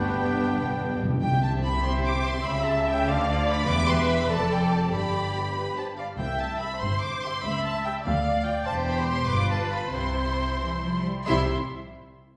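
Moving in a straight 6/8 at roughly 89-98 dotted-quarter beats per minute, this cheerful, graceful classical-period orchestral passage in C major opens with a brief entry from the full winds and brass: bright, airy flutes, a clear oboe, a distant clarinet, a dark bassoon, a barely audible mellow horn section and mellow trumpet stabs, all gone within the first second while the timpani plays a fill beneath them. From there the strings carry the music in a wet, reverberant hall, with a lush, up-front symphonic violin section singing the melody high above a rich chamber violin second line, an expressive viola accompaniment, and smooth, even cellos alongside rich double basses. The timpani returns briefly at 6.2 s and again at the close, and the phrase slows from 8.1 s into a cadence that settles onto C.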